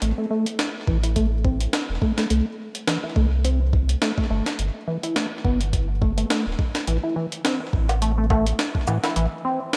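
A swung 16th-note groove at 105 BPM in 4/4 drives this intricate, cerebral IDM fragment in A minor, cut from a longer piece. A gritty, pitched-up jungle-style sampler kit of bongos, hi-hat, shaker and a medium-tuned snare sits up front with gated reverb and delay, joined at 0.9 s by a thumpy, compressed electronic kick. A round sine sub bass with tube saturation underpins rubbery, resonant sawtooth acid arpeggios carrying a filter sweep, chorus, tape grit and digital delay, all within a bright 1980s-style digital production and a plate reverb.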